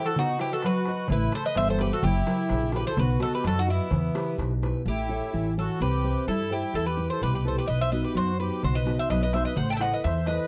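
A dry, close 1970s-style studio sound frames this driving, dramatic Greek folk excerpt in 2/4, where a bright, metallic bouzouki with picked double strings and slapback echo carries the melody up front over a reedy, sweet accordion second line with light tremolo tuning, a fingerpicked steel-string acoustic guitar accompaniment, a woody, thumpy pizzicato upright bass on gut strings entering at 1.1 seconds, and a vintage, band-limited clay-shell darbuka played with hard hands in the background that drops out at 4.7 seconds and returns at 8.6 seconds.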